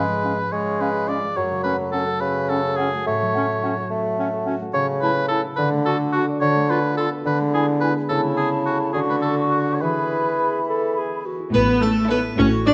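In a steady 6/8, this magical, quirky cinematic fragment opens with a bright, ringing concert harp spinning arpeggios beneath a close, clear oboe, a present clarinet and a soft background flute section, all weaving second lines over a punchy bassoon accompaniment in a recital hall's moderate reverb, until at 11.5 s a full harpsichord takes the melody as a lush, up-front viola section, a smooth cello section and a double bass section arrive, with a very quiet, mellow French horn section sustaining chords from 11.8 s and faint chamber violin sections touching in briefly at 12.1 s.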